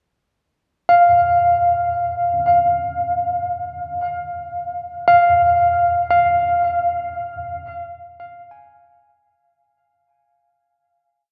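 The sound is drenched in a huge, wet reverb whose long tail hangs in the air, giving this brief ambient piece a vast, hazy space. A lone tine electric piano plays solo, with a clean tone heard through its built-in speakers and placed up front, its scattered notes sitting high between F5 and Ab5 and trailing into a diffuse ambient delay. The tempo is a slow 57 BPM in a straight 4/4, though the sparse phrases drift more than they pulse. The harmony stays unanchored until an F minor chord arrives at 7.2 seconds, lending the close a gentle, shadowed colour. A fade-out begins at 5.1 seconds, and the serene, reflective mood lingers as the piano dissolves into the surrounding reverb.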